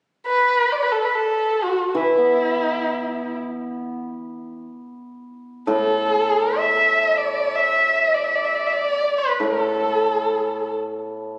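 Captured on a phone in a room with a club-like reverb and a moderate stage-like ambience, this short passage from a longer Chinese traditional chamber piece unfolds in free time in the A zhi mode, tuned slightly low to A4 = 437 Hz. A dark, expressive solo erhu carries the melody from 0.3 seconds, its bowed line soft in attack, smooth on top and coloured with vibrato and portamento. From 1.9 seconds a shimmering, ringing hammered dulcimer adds accompaniment in its low register, giving the festive, graceful mood a gentle glow until the close at 11.4 seconds.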